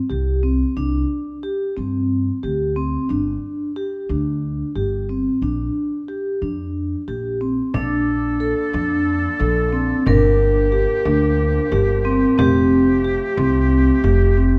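Urgent and hypnotic, this contemporary chamber excerpt in 7/8 opens with mellow, ringing soft-mallet vibraphone arpeggios with a slow motor vibrato over woody, growly pizzicato upright bass. At 7.7 seconds, a bright, airy hard-mallet vibraphone adds a second line, while a close-miked woodwind section holds tight, vibrato-tinged chords and a small, very quiet frame drum played with soft hands joins, within a dark production carrying light reverb.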